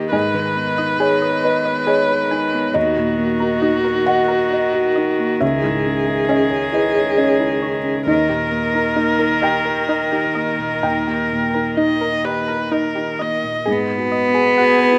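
A dark, boxy felt-muted upright piano with audible action noise opens this melancholic, longing neoclassical fragment together with an intimate sul tasto viola with light vibrato and a pure, floating cello second line, in a rubato 3/4 at 67 BPM. From 0.1 s a soft, round synth pluck with chorus and tape echo traces arpeggios as the harmony moves through G#m, D#m, C#madd9 and D#, settling on G#m7 at 13.7 s. A lush hall reverb surrounds the rough home-demo mix of this passage, which is cut from a longer piece.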